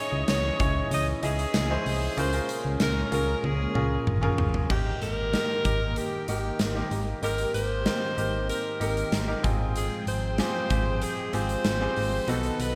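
A glossy, bright 1980s-style digital production sits in a lush hall reverb, giving this uplifting pop excerpt a polished sheen at 95 BPM in a straight 4/4. An alto saxophone carries the melody, bright and present, with light vibrato, scooped notes and a touch of delay. A very quiet studio violin section adds a rich, smooth second line high above until 4.1 seconds. A brilliant grand piano plays the accompaniment with long sustain, while a thick, warbling unison pad, vintage and detuned with chorus, holds sustained chords in the background. Beneath them, a punchy, round FM bass with a dark, decaying tone anchors the low end, and a big rock drum kit with a punchy kick, a medium-tuned snare, bright cymbals, tambourine and toms booms through gated reverb. A drum fill from 3.4 seconds leads into a new section at 4.7 seconds, where the harmony moves from Dbmadd9 and Bbm7/Db to Eb/Ab and Fmadd9/Ab.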